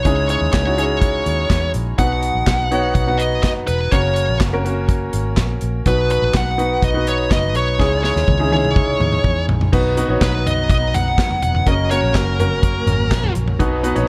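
Light reverb and a small-room ambience frame this short, anthemic slice of piano-driven pop, cut from a longer piece and moving at 124 BPM in a straight 4/4 in F# mixolydian. A clear, intimate concert grand sits up front with deep bass and audible action noise, carrying the accompaniment through a progression that cycles through C#madd9, B and F#. Beneath it, a round, punchy, foam-muted electric bass holds the low end, while an acoustic drum kit with a tight kick, medium-tuned snare and a dark, rolled-off top drives things with hi-hat, handclaps, toms and crash cymbal. A bright, high-gain lead guitar, distorted and picked, states the uplifting melody up front until 13.3 seconds. A drum fill from 7.8 seconds leads into the next section at 9.7 seconds, where a distant bowed string ensemble enters in the background with soft attacks, vibrato and expressive portamento.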